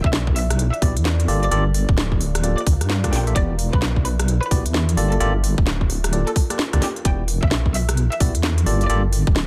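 Opening at once on a rich, biting chamber violin section carrying the melody through tape echo, a deep, wobbling sawtooth bass with chorus, an up-front tight electronic kick and a very quiet, evolving ambient pad, this skippy, moody two-step UK garage excerpt brings in a tape-warm kit of crisp hats, rim clicks and a cracking snare, re-recorded in a large room, at 0.1 s, then bright, clean electric piano stabs through a low-pass filter from 0.8 s, moving between Gm7 and Em7 chords with a swung sixteenth-note feel.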